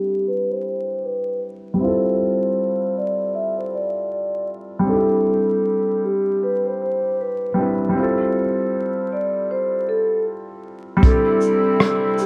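Mellow and cosy, this short lo-fi hip hop clip at 78 BPM in swung 4/4 sets a ringing, metallic soft-mallet vibraphone melody with tape echo over an intimate, thin-felt upright piano with a cassette tinge, moving between C and Fmaj9 under a filter sweep until 11.0 s, when a reedy, airy accordion and an up-front brushed kit with tight kick, hi-hat, rim click and shaker join, set in spring reverb, vinyl crackle and dark, warm production.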